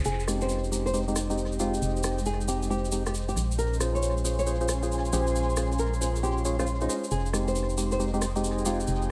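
UK garage two-step excerpt with a skippy, bouncy swing, where a hollow, organ-like FM bass sits up front beneath dark, percussive organ stabs with chorus and analog delay, a thumb-plucked flamenco guitar melody through analog delay, a grainy vintage tube shaker with tape echo, an overdriven analog drum machine in the background with filtered hats, snare and crash, and two background pads, one ethereal and mellow with ensemble chorus sustaining Fm9 and Bbm9 chords, the other a soft, breathy texture with chorus and phaser, all in an echo-heavy mix.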